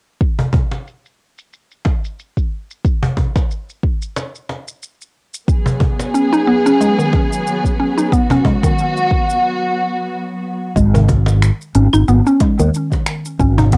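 A deep electronic kick and a low-passed deep house kit of claves, finger snaps, smooth hi-hats and shaker open this mystical, earthy organic downtempo excerpt at 91 BPM with a swung 16th feel in G# minor pentatonic, joined by a woody, hard-handed cajon, before lush, vibrato-rich strings with 12-bit grit and sidechain pumping arrive at 5.5 s, a round, warbling FM mallet pluck with chorus and tape echo follows at 6.1 s, and a growly fretless bass with ensemble chorus enters at 10.8 s as the pluck takes a filter sweep, all set in a moderate room on a cassette home recording.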